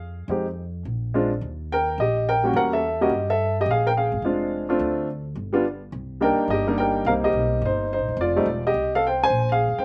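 Recorded dry in open air, with hardly any reverb or room sound, this short cut from a longer jazz piano trio performance sounds close and intimate. The upright piano sits up front with a smooth, woody, vintage tone, its short sustain and touch of slapback echo giving the melody a crisp bounce. Beneath it, a pizzicato upright bass with steel strings adds a dark, acoustic low end, sitting further back in the balance. Both parts play throughout the full 9.8 seconds at a brisk 213 BPM in 4/4, with a light swing on the eighth notes and a relaxed, easygoing mood in B-flat mixolydian, tuned slightly below concert pitch at A4 = 439 Hz. The harmony moves through Fm7, Bb9, Eb and Edim7, pauses briefly on a break at 5.4 seconds, then resumes with Cm7 and F7sus2 before settling on Bbsus2.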